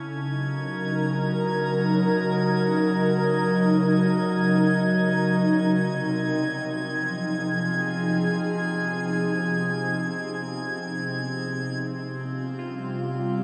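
Peaceful and luminous, this ambient passage in free time is cut from a longer piece and rests on an airy, breathy pad holding sustained chords up front with chorus, while a glassy texture of drifting overtones hovers high above with its own chorus and built-in reverb. Around 11.8 seconds the harmony settles onto Fsus2, and at 12.6 seconds a bright, twangy clean electric guitar slips in, sitting in the background with a brief arpeggio on F4. The whole is bathed in a huge, wet reverb with cassette tape character and a touch of small room ambience.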